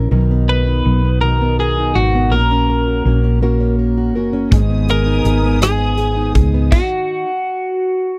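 A clean, compressed twelve-string electric guitar carries the melody up front, entering at 0.5 s and ringing on after the rest of the band has stopped. This short cut from a longer six-eight pop ballad sits in G# minor at a slow 54 BPM counted in dotted quarters, with a melancholic, dramatic mood as the chords move from Bmaj7 through F#/A# to G#m. Two fingerpicked steel-string acoustic guitars fill the bed: a full-bodied jumbo plays the accompaniment, while a warm dreadnought adds arpeggios in the background. Beneath them sits a dark, round, punchy hollow-body short-scale bass, placed up front. At 4.5 s, a small-room acoustic drum kit with a tight kick, hi-hat, rim click and crash cymbal arrives, along with a bowed string section playing soft-attack sul tasto chords with vibrato and a smooth top. The strings and bass cut out at 6.7 s, and the dry, close 1970s-style studio sound, with little reverb, leaves the twelve-string ringing through the final stop.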